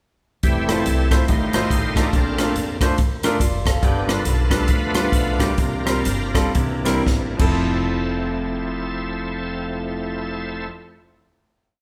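Jubilant, hopeful uptempo gospel in F major swings along at 106-142 BPM, opening with a shouting, lightly overdriven tonewheel organ solo through slow rotary speaker and chorus vibrato, backed by the punchy, high-tuned drum kit's driving two-beat praise groove, a woody, thumpy upright bass walking with chromatic approach notes, and a brilliant grand piano adding off-beat chords and short fills. The band slows down from 3.8 seconds, a drum fill ends the kit's part at 7.5 seconds, and the group lands on a final hit that rings out in a large studio room with moderate reverb.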